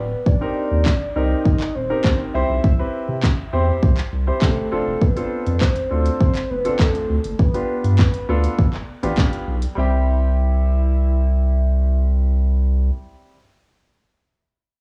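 Dance-pop with a carefree, euphoric lift, this short excerpt sets a round, octave-layered synth lead carrying the melody with chorus, phaser and tape echo over a clear baby grand piano accompaniment that pumps with the sidechain and carries a cassette-tape tint, a thick, saturated sub bass that also pumps up front, and a punchy, overdriven house drum kit of kick, cracking snare, bright hats and handclaps that drops out at 9.8 seconds, all sitting in light reverb with a homespun cassette character.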